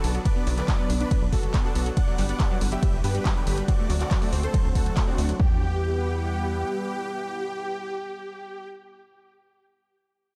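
A dark, warm production sits in a digital ambience on this cut from a longer uplifting trance piece, soaring and bittersweet at 140 BPM in 4/4 and E minor. The drop opens at once, driven by a punchy, up-front electronic kick that enters at 0.3 seconds. Handclaps, hi-hat and ride cymbal from an analog drum machine, re-recorded in a large room, sit beneath it, along with a tight sawtooth-and-square sequencer bass with a fast, decaying filter pluck. Over the Bm, Gmaj7 and D7 chords, a huge, thick, detuned supersaw carries the compressed melody with vibrato, sidechain pumping and tape echo. Behind it, a lush unison pad with a slow attack and long release shimmers through chorus and phaser, and a round, detuned analog pluck with a noise layer and filter sweep plays arpeggios. The drums fall away at 5.4 seconds as the harmony settles on Emadd9, and the bass stops at 6.6 seconds, leaving the supersaw and pad pumping to the end.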